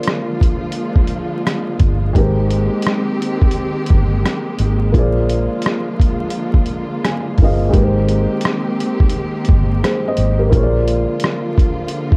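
A mellow, nostalgic lo-fi hip hop excerpt at 86 BPM opens with a soft felt-muted upright piano, colored by cassette tape, over lush bowed strings with vibrato and portamento and a gritty, pitched-down sampler-style drum kit whose thumpy kick, hi-hat and rim click sit up front; a round, punchy foam-muted electric bass joins at 1.8 s, the piano slips in a brief fill at 6.7 s, and the chords alternate between Bb7 and Abmaj9 inside a dark production with light reverb and vinyl crackle.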